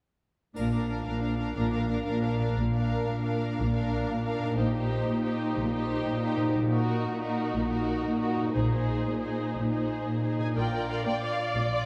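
A full string section opens this triumphant, soaring passage from a heroic adventure film score at 0.6 s. Violins carry a lush, vibrato-rich melody over a focused second violin line, and the violas add expressive portamento in the accompaniment, while a faint triangle sounds briefly in the background. Low down, a dark, even cello section and a clear, focused double bass section hold a steady Bb foundation. At 2.4 s a mellow, ringing concert harp joins with very quiet thumb-plucked arpeggios. A build-up follows, with the harmony moving from Bb through Cm/Bb, Ebm/Bb and Ab/Bb before returning to Bb at 10.6 s. The piece moves at 120 BPM in a straight 6/8 in Bb mixolydian, tuned to A4 = 439 Hz. It is heard from further back in the room on a wet scoring stage, and this section is cut from a longer work.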